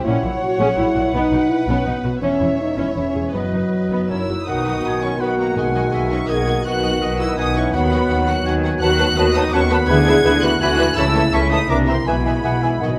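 A lush, close-miked orchestral sound on a moderately reverberant scoring stage carries this graceful, lively classical piece in 3/4 at 166 BPM in B major turning to E major from 8.8 s, with a warm violin section singing the melody over flute, mellow clarinet, a softer second violin line and a clear oboe entering at 4.5 s, while rich violas, a mellow bassoon and French horn chords fill the middle, a bright, ringing harp arpeggiates, cellos and double basses anchor the bass, and hard-mallet timpani strike briefly before a closing fill at 12.8 s.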